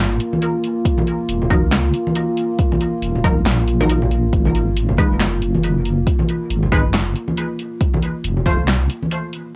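Cut from a longer piece, this dry home recording on cassette has a close intimacy that suits its meditative, cavernous mood. It is deep dubstep at 138 BPM in a half-time feel, with a 60% swing on the sixteenths, moving through Bb7(no3), Ebm, Abm and F. A dark analog pad of square and sawtooth tones with a sub octave and a moving notch holds sustained chords under chorus, while the up-front wobble bass, saturated and detuned, wobbles low beneath it. A deep house kit of handclaps, hi-hat and a punchy snare enters at 0.2 seconds with overdrive and the grit of a small room. Compressed congas played with soft hands join at 0.3 seconds, and an overdriven electronic kick follows from 0.9 seconds. From 1.5 seconds a filtered dub chord stab, wave-folded and resonant with a quick pluck, cuts through bright and muted at once, coloured by phaser, lush chorus and dub echo.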